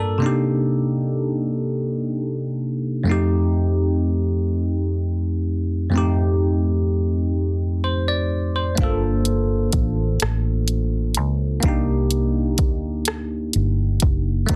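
A slow, straight six-eight pulse at 42 BPM, counted in dotted quarters, carries this yearning, sultry R&B passage cut from a longer piece. A bright, barky tine electric piano with a bell-like edge and a phaser opens alone, moving through Cm9 and F9. At 8.8 s a vintage muted fingered electric bass enters, dark, round and foam-muted, as the harmony turns to Gm9 before settling back on Cm9. A smooth, electronic, tape-warm R&B drum kit arrives at the same moment with a soft kick, warm hi-hat and rim click. All three parts sit up front, with light reverb and a dense, heavily limited modern master.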